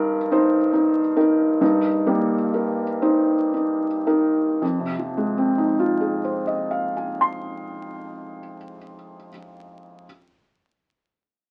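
Rubato 6/8 at 36-50 BPM in dotted quarters, slowing through the opening, carries this reflective, melancholic neoclassical minimalist piano fragment in F minor, tuned to A4 = 442 Hz, where a solo felt-muted upright piano, soft, mellow and intimate with audible action noise and thin felt, sits up front across F2 to C6, moving from Cm7/G to Fm7 at 4.6 seconds in moderate studio ambience beneath the crackle of a very old 78 rpm record.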